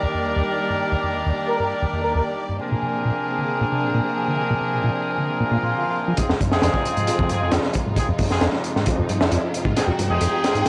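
A dry, gritty hardware recording with vinyl crackle and light reverb frames this raw breakbeat excerpt in straight 4/4. Lush, bowed symphonic strings hold sustained chords under sidechain pumping, while a rubbery, resonant acid bass riff with analog chorus and a cassette tape character runs beneath them, and a vintage horn section plays up-front stabs through a low-pass filter and analog delay. Near 1.5 seconds a distant, veiled trumpet with a bucket mute plays a brief melody, colored by an AM radio sound and analog delay. Electronic swells and risers enter in the background at 5.4 seconds, and at 6.2 seconds a crunchy breakbeat kit with a punchy kick, a high-tuned snare and a saturated, rolled-off top arrives up front as the build-up begins, the harmony settles on Fm7 after the earlier Ebmaj7 and Bb9, and a filter sweep moves over the acid bass. Shortly after, a thick, menacing detuned saw bass, high-pass filtered, joins in the background, and a drum fill closes the passage.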